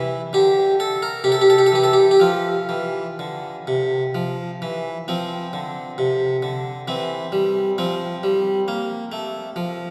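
Moving in a gently swaying three with a flexible, rubato pulse, this short classical excerpt from a baroque-style suite movement presents a solo harpsichord, airy and plucked in the French manner on a single set of strings, sitting up front in a church with a long, wet reverb, as a serene, dance-like phrase passes through its opening section and into a second one from 5.1 seconds, settling on F by the close.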